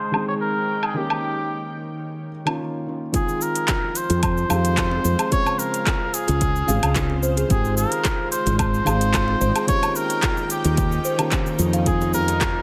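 Hypnotic and warm, this organic downtempo excerpt in straight 4/4 opens with a filter sweep under a veiled, cup-muted trumpet melody up front with tape echo, a dark felt-muted upright piano pumping softly in the background, and a tense, nasal bowed-like drone holding sustained chords, while a deep house kit of metallic hi-hat, cabasa, handclaps and woodblock adds overdriven grit. At 3.1 seconds a ringing, woody kalimba enters with echoed arpeggios alongside a deep, overdriven electronic kick, and a round, hollow-body fretless bass follows at 4.1 seconds, carrying the chords through Fm7, Dbmaj7, Abmaj7 and Eb7. A very quiet djembe played with soft hands appears only at 12.0 seconds, all set in light reverb and a small room.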